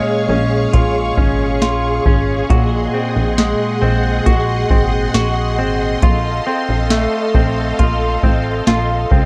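Melancholic and haunting, this dream pop excerpt moves at a slow 68 BPM in Bb minor, drifting through Bbm7, Ab7/Bb and F7/Bb. A clean, compressed semi-hollow electric guitar plays arpeggios up front, bathed in lush chorus and delay, over sustained, soft-attack string machine violas with ensemble chorus. A punchy, plucky analog bass with a fast, decaying filter pluck joins at 0.3 seconds, and a soft vintage rhythm box with a deep kick, crisp snare and metallic hats enters at 0.7 seconds, all within a dark production and light reverb.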